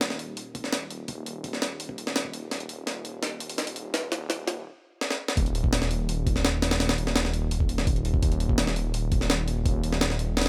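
A dry, close-up mix carries this dark, frenetic drum and bass and jungle excerpt at 168 BPM, where a gritty, pitched-up, compressed sampler-style kit with a thumpy kick, a medium-tuned snare and hi-hats, re-recorded in a small room, drives a build-up broken by fills from 2.5 seconds before the drop lands at 5.4 seconds, underpinned by a thick, menacing detuned saw bass that sits on Eb1 with a beating, saturated tone.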